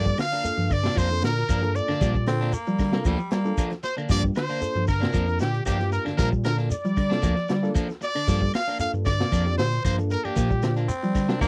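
A crunchy breakbeat kit with a punchy kick and a gritty, rolled-off top drives this funky, intense afrobeat excerpt at 115 BPM in G minor, alongside grainy shekere, faint woody claves and a deep, thick saturated sub bass over a Gm7 chord. A brilliant trumpet with vibrato and scooped notes carries the melody until 10.8 s, with a very quiet growling trumpet playing a second line beneath it, while a raspy baritone saxophone adds another second line at 2.3 s and again at 10.9 s. Underneath, a clean electric guitar picks arpeggios in the background, a slightly broken-up guitar plays stabs, and a reedy, worn electric piano with harmonic tremolo fills out the accompaniment in a dry, close 1970s-style studio sound with light reverb.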